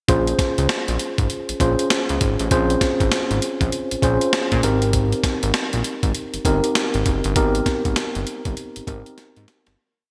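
A hard-swung new jack swing groove at 99 BPM in 4/4 drives this bouncy, confident R&B piece in Bb dorian, built on a gritty, compressed sampler-style breakbeat with a thumpy kick and medium-tuned snare, all carrying a gated reverb. A fat, detuned analog synth bass plucks a swung synth-funk line with muted ghost notes and chromatic approach notes, while a mellow tine electric piano pushes rootless chords with grace notes, moving from Bbm9 to Abmaj9 at 4.6 seconds. The bright 1980s-style digital production sits in light ambience, fading out from 7.4 seconds as a drum fill arrives at 9.2 seconds.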